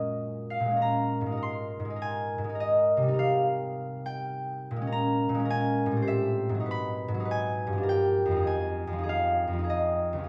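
Moving in a flexible 3/4 at about 102 BPM, the beats stretch with rubato in this wistful, gentle classical piece for solo concert harp, cut from a longer work. The fingerpicked harp sits up front with a ringing acoustic tone spanning Db2 to B#5, passing through a chain of mostly minor seventh chords from A#m7 and G#add9 to Fm7 at 8.5 seconds. A moderate recital hall reverb with a 1.4-second decay surrounds the instrument for its full 10.3 seconds.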